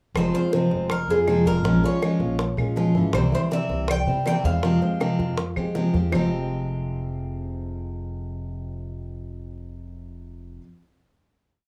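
A short, complete Cuban son piece in the guajira style, nostalgic yet danceable, moving at a brisk 161 BPM in a straight 4/4 in F harmonic minor. The upright bass sounds first at 0.1 seconds with a thumpy, woody pizzicato and a syncopated figure, and at 0.2 seconds the rest of the band enters together: a bright, metallic Cuban tres picking motif-based call phrases on its double strings, a full-bodied dreadnought acoustic guitar strumming with muted slaps, and a dark baby grand playing a mellow piano montuno in octaves, its action noise audible, set back in the mix. Tight, high-tuned bongos keep steady eighths with a hand bell, while woody claves tap a two-bar time line in the background. The harmony moves through Fm, Bbm7 and C before arriving at Fmadd9 at 4.6 seconds, held as the final chord from 6.1 seconds; the tres drops out at 5.7 seconds and the percussion at 6.2 seconds, leaving guitar, piano and bass to ring out to 10.6 seconds. 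Plate reverb sits on the tres, guitar and piano, and the whole has the rough feel of a home demo in a small, reverberant room.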